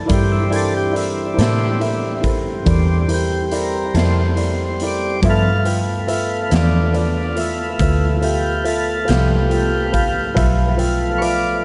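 A slow 12/8 blues shuffle-free groove at 47 BPM in G mixolydian sets a laid-back, gritty mood, as a smooth, up-front tonewheel organ through a slow rotary speaker takes the lead with sustained chords moving from C13 to G13, over a round, foam-muted fingered electric bass, a woody upright piano with analog delay, a saturated garage drum kit of kick, snare and hi-hat in a pumping stone room, and a dark, clean electric guitar with tremolo and delay sitting in the background from 1.4 to 9.4 seconds, all within a lightly reverberant, echo-heavy mix with a rolled-off top.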